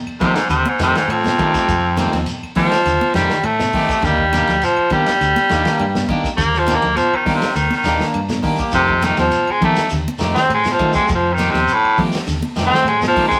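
Funky and joyful, this afrobeat groove moves at 102 BPM in a straight 4/4, drawn from a longer piece and centred on F mixolydian. A raspy, gritty baritone saxophone sits up front and solos throughout, forceful and punchy with a clear vibrato and a vintage edge, while the chords shift from F9 to Ebmaj7 at 4.0 seconds and back to F9 at 8.7 seconds. Beneath it, a round, punchy fingered electric bass holds down the low end, and an electric guitar at the edge of break-up adds twangy, slightly broken-up picked stabs over a dark, clean guitar playing fingered arpeggios in the background. A soul drum kit with a tight kick, medium-tuned snare, dark cymbals and a rolled-off top drives the groove alongside high-tuned congas struck with hard hands, a grainy, band-limited shekere and very quiet, woody claves. The whole band sounds like a rough rehearsal-room take, wrapped in saturation and a moderate stone-room reverb.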